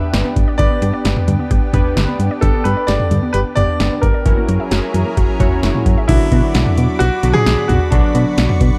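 A dark production with light digital ambience frames this melancholic, driving synth-pop at 131 BPM, where a clear baby grand piano carries the melody through analog delay over chorused analog keys with an airy, warbling vintage tone, a thick, bright unison pad holding sustained chords, background sawtooth pluck arpeggios that stop at 6.0 seconds, a punchy, round FM bass and an up-front electro analog drum machine with deep kick, punchy snare, metallic hats, toms and crash, as the harmony moves from G to F#7 and settles on Bm at 6.1 seconds.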